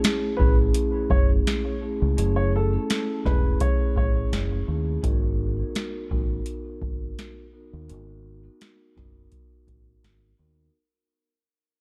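A booming analog drum machine sets a swung boom-bap groove at 84 BPM in 4/4, its deep kick, crisp snare and metallic hats carrying a tape-warm grit from being re-recorded in a small room and sitting up front. From 0.4 s a deep dub fingered electric bass joins, dark and round, moving low beneath the beat throughout this moody, gritty hip hop excerpt. A vibraphone played with soft mallets and the motor off rings out a mellow accompaniment from the start, filtered at both ends and trailed by dub echo. A woody upright piano with audible action noise and a short, vintage sustain carries a brief melody between 0.4 and 4.5 s, also filtered and echoed. The harmony moves from F#m9 to G#m9 at 5.0 s, the echo-heavy studio reverb bathes the mix, and the whole fragment fades out across its length.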